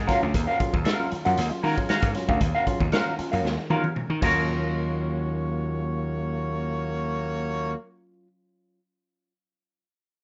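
Funky and hypnotic, this straight-feel funk groove in Eb minor moves at 116 BPM in 4/4 and sits on a single Ebm9 chord, cut from a longer piece. A gritty slap bass, overdriven and punchy, drives from the start, while a clean, picked semi-hollow electric guitar runs through wah and spring reverb for hollow-body accompaniment. A barky tine electric piano adds lightly overdriven stabs with analog delay, tucked a little lower in the mix. The raw garage drum kit carries a tight kick, medium-tuned snare, hi-hat, toms and crash with a saturated, sampler-grit character and a rolled-off top, playing a fill from 3.4 seconds before dropping out at 4.3 seconds. Just before that, a clear horn section enters at 4.2 seconds with light vibrato and a smooth top, punching in a second line through the closing part. The whole has a rough home-demo sound in a moderate small room, its highs capped.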